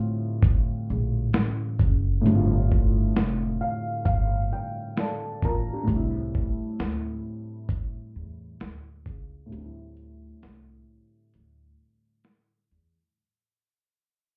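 A swung sixteenth-note lo-fi hip hop groove from a gritty, compressed sampler-style drum kit with thumpy kick, medium-tuned snare, hi-hat and shaker sets a hazy, melancholic mood alongside a dark, felt-muted upright piano with audible action noise, cassette-tape colour and a filter sweep, while a woody, growly pizzicato upright bass joins at 0.9 s, the chords moving from Gm7 through C69 to D5 as a break arrives at 9.5 s, the mix sounding muffled as if through a wall in club reverb as this fragment of a longer piece fades out.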